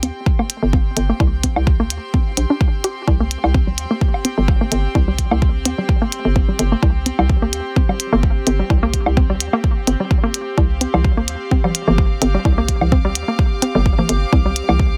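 Clinical and hypnotic, this minimal techno excerpt at 128 BPM in 4/4, with a light swing on the 16ths and tuning at A4 = 441 Hz, sets a deep, overdriven kick up front from 0.3 seconds beside clicky, driven hi-hats, dry analog woodblock and congas trailing dub echo, a punchy, bouncy FM bass with sidechain pumping, and a hollow square-wave pluck riff carrying a noise layer, chorus, cassette-tape grit, tape echo and pumping, while a filter sweep runs across the synth arpeggio and a pure, floating bowed string section, also pumping, fades in across the full 15 seconds in light reverb.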